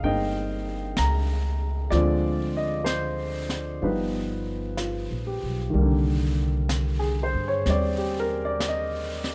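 A natural, up-front baby grand piano carries this wistful, melancholic jazz ballad with a gentle swing, joined throughout by a woody, thumpy pizzicato upright bass on gut strings and a softly brushed kit with an airy, high-tuned snare and hi-hat, all captured dry and close in a brief cut from a longer piece that moves through Cm7, Dm7b5 and G7alt before settling on Cm9 at 5.7 seconds.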